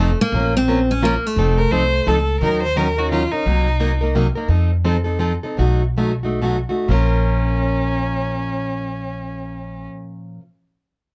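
A bright, up-front picked steel-string guitar states the melody for the first 2.1 seconds of this bittersweet, virtuosic jazz manouche excerpt in 3/4, set in Bb harmonic minor with a 60% swing between 120 and 173 BPM. A boxy parlour-style plugged-in acoustic guitar carries the accompaniment over a woody, thumpy pizzicato upright bass on gut strings, while a smooth bowed violin with vibrato enters as a second line at 1.6 seconds. The tempo slows from 4.5 seconds before the harmony returns to Bbm, all captured by close, detailed microphones in light reverb.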